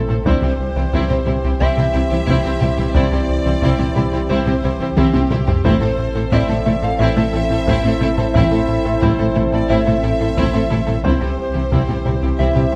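A cinematic, hybrid orchestral and electronic film score cue, cut from a longer piece, with a futuristic, brooding mood in a straight 4/4 feel. The melody pairs a lush, focused violin section with a round, keys-like FM synth lead carrying chorus, tremolo and tape echo, while a second, smooth-topped violin line and an expressive viola section with portamento sit in the background. Dark, distant French horns and a warbling analog pad hold sustained chords over a harmony that moves from C to A minor and back to C at 11.0 seconds. Beneath them, a rubbery square-wave bass riff, a deep dub sub bass, and very quiet bowed cellos and double basses anchor the low end, as a tight, detuned sequenced synth spins arpeggios and a felt-muted upright piano adds an intimate texture. Heavy-stick taiko drums with a vintage, band-limited tone play in the background, breaking into a fill from 5.0 to 5.7 seconds, all captured with close, detailed microphones and light reverb.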